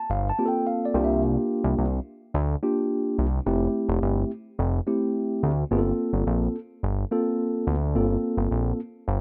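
A light digital reverb gives this short cut from a longer boogie funk piece a polished sheen, with both parts sitting up front. In an early-eighties style, the groove moves at 107 BPM in a straight 4/4 and rests in G dorian, making for a danceable, slick mood. A mellow tine electric piano carries the accompaniment, clean and heard as if through its built-in speakers, opening with a short fill in the first 1.2 seconds before settling into chords between A3 and A5. Beneath it, a fat analog bass enters at 0.1 seconds, its detuned sawtooth and square-wave tone thick, nasal and saturated, with a filter pluck and fast attack that then sustains low between F1 and D2. The harmony moves from Gm11 through C7sus4 and Fmaj9 before returning to Gm11 at 5.7 seconds, and the bass rings on briefly after the piano ends, closing the passage at 9.2 seconds.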